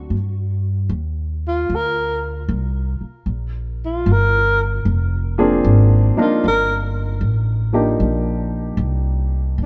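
A slow swing in 4/4 at 76 BPM, with swung eighths, sets a relaxed jazz ballad pace for this intimate, late-night fragment cut from a longer piece. Pizzicato upright bass with a woody, steel-string tone holds the low end up front from the first moment to the last. A breathy alto saxophone takes the melody as a close-miked solo from 1.5 seconds, its whispered, soft-attack phrases colored by vibrato and scooped notes. A warm grand piano with short sustain touches the very opening and then returns as accompaniment at 5.4 seconds. The harmony moves from Gsus4 through Bb7 to Ebmaj9, and a light reverb gives the hushed performance a gentle sense of room, as if heard from further back.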